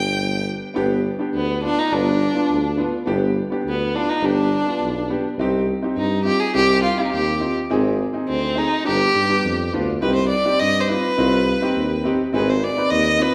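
A single bowed violin leads this short klezmer excerpt, its rich, smooth tone carrying vibrato and sitting up front in the mix as it sings the melody from B3 to G5. The mood is festive yet bittersweet, set at 104 BPM in a straight 2/4 and colored by the G phrygian dominant mode. Beneath it, an upright piano supplies a clear, woody, slightly boxy accompaniment in the middle register, while a breathy, mellow tuba holds down the bass with vibrato, scooped notes and a jazz-inflected touch. The harmony moves from G through Cm and Ab before returning to G, and a new section begins at 10.0 seconds on Cm. All three parts play throughout the 13.3-second clip, bathed in the lush reverb of a church or concert hall.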